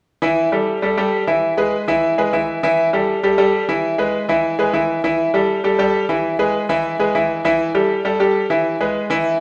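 Passionate and driving, this brief Latin piano solo, cut from a longer piece, sets a brilliant, worn concert grand up front, its deep bass and audible action noise giving an intimate feel, as it alternates between A5 and E chords in a straight 4/4 within the wet reverb of a large studio room.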